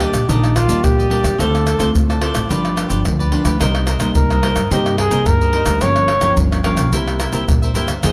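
A dark, smooth-topped trumpet takes a jazz-style solo up front with vibrato and scooped notes until 6.4 s over a bittersweet, nostalgic samba-choro groove at 108 BPM, where a crisp, bright picked cavaquinho, a fingerpicked classical nylon-string guitar and a woody pizzicato upright bass move through Ebmaj7, Dm7, G7 and Cm7 toward Gm7b5 and C7, while a compressed, saturated percussion blend of pandeiro, tamborim, egg shaker and tight surdo sits close and detailed in a moderate large-studio reverb in this brief excerpt.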